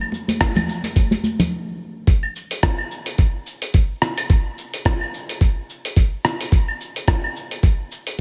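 The electronic kick drum stands out in this downtempo excerpt: a thumpy, gritty, sampler-style sound that sits up front with compressed, tape-warm weight from 0.4 seconds. Around it, a dusty soul drum kit of claves, hi-hat, rim click and shaker sets an earthy, hypnotic groove at 108 BPM in 4/4, with the 16ths swung. Like the kick, the kit sounds as if it was re-recorded in a small room. Acoustic congas played with hard hands join at 0.1 seconds, close and dry, until 1.5 seconds. After a brief stop, a second section unfolds, and a light reverb colours the whole recording.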